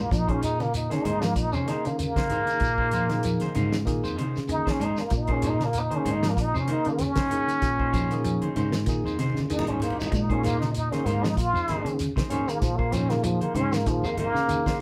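Over a swung sixteenth-note groove at 96 BPM in 4/4, this hypnotic, defiant afrobeat passage in Bb minor rides a single Bbm11 chord, with a damped 70s drum kit laying down a dry pulse of fat snare, tight kick and hi-hat, and a drum fill from 9.2 to 10.1 seconds. A plunger-muted trombone takes the solo up front, its bright, wah-wah tone carrying light vibrato and a roomy, distant sheen in a pop style. Underneath, a fingered electric bass sits round and punchy, while low-tuned congas with a thick skin sound from the background of a large room and a grainy, compressed shekere adds a mellow texture. A hollow-bodied semi-hollow guitar plays dark, clean fingered arpeggios in the background, a clean picked electric guitar adds stabs, and a barky tine electric piano, lightly overdriven through a combo amp, fills in the accompaniment. The band plays live together in one room with a wet studio ambience, in a passage cut from a longer piece.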